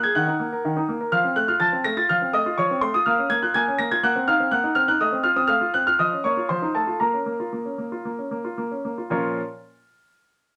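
Restless and serious, this short piece is cut from a longer classical-period piano sonatina in B-flat minor, moving at roughly 112-125 BPM in 4/4 with a flexible, rubato feel. A solo concert grand piano carries everything from the opening moment until 9.4 s, ranging from Bb2 up to Bb6. Its tone is clear and polished, with a deep bass and short sustain, and it sits present and up front in the mix. The harmony opens on E-flat minor and F before settling into B-flat minor, then passes through a half-diminished chord over a B-flat bass and F7 on its way back to the home key. A moderate studio reverb gives the piano a modest sense of room, and a brief new section begins at 9.1 s, shortly before the piano's final notes at 9.4 s.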